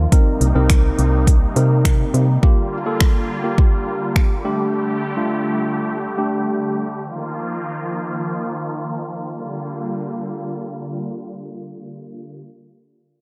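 Bittersweet and energetic, this dance-pop fragment in G minor moves at 104 BPM, with an up-front deep house kit of deep kick, smooth hats and finger snaps beside a punchy, round FM bass that plays only to 2.4 s before the drums drop out at 4.3 s. A clean tine electric piano, heard as if through built-in speakers, carries chords from Cm7 through Gm7 and Dsus4 until 6.9 s, both it and the bass pumping against the sidechain. A soft-attacked, detuned sawtooth swell, filtered and pumping, sustains chords across the whole span, settling on Ebsus2 and then on Gm7, which opens a brief closing section, all in a dry, close sound.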